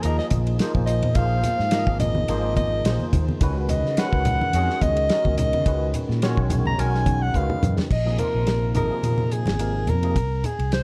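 A mellow soprano saxophone sits up front, playing a jazz-style solo through the first 7.9 seconds with light vibrato, a subtone and a slapback echo. This slick, intense slice of electric jazz fusion, cut from a longer piece, moves in 4/4 with a gentle swing on the sixteenths. A barky tine electric piano comps underneath, its clean, direct tone thickened by an ensemble chorus, over Bb9sus4 and Db9sus4 chords before dropping out at 10.2 seconds as the harmony lands on Abadd9. A round, amped fretless electric bass anchors the low end, while a dry 70s drum kit with dark cymbals, a medium-tuned snare and a tight kick plays kick, snare, hi-hat, ride, crash and toms, and a drum fill at 7.3 seconds leads into a new section. Low-tuned congas with a thick-skinned, warm tone sit in the background in a small room. The production is dark overall, with light reverb.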